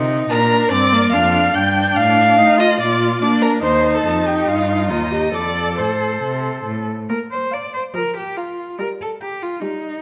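A clear, focused cello sits up front with bowed vibrato beneath a quick, spirited and graceful classical-period string quartet movement in Bb major at 143 BPM, where a smooth, even melody violin and an expressive second violin enter at 0.3 s above a distant, rich viola accompaniment with portamento, all set in a moderate recital-hall reverb as the passage moves into a new section at 7.1 s in this fragment cut from a longer piece.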